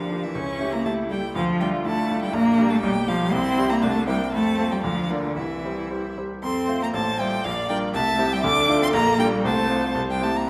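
A wet recital-hall reverb surrounds this short passage, cut from a longer piece: a quick, cheerful and graceful classical-period movement for piano quartet in F major at 120 BPM in 2/4, shaped with rubato. The rich violin carries the melody up front and close, singing with vibrato and portamento. Beneath it the cello, equally up front, plays an expressive second line with its own vibrato and portamento, while the viola sits in the background with a smooth, even accompaniment. The clear grand piano is present and up front, filling out the accompaniment across a span reaching down to the bass. After an opening section, a new section begins at 6.4 seconds, moving through F, Bb, C and D minor harmonies before settling on C at 10.0 seconds.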